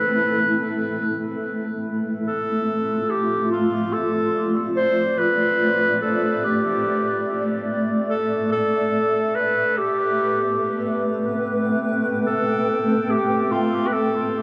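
A lightly swung 72 BPM pulse in 4/4 underpins this deep, hazy ambient piece in A minor. A distant, roomy clarinet carries a classical-style solo melody through dub echo over a cloudy, wave-folded granular pad, which holds sustained chords bathed in its own reverb and moves from Am9 to G9sus4/A at 1.4 seconds and back at 8.1 seconds, inside an echo-heavy mix with wet spring reverb and small-room ambience.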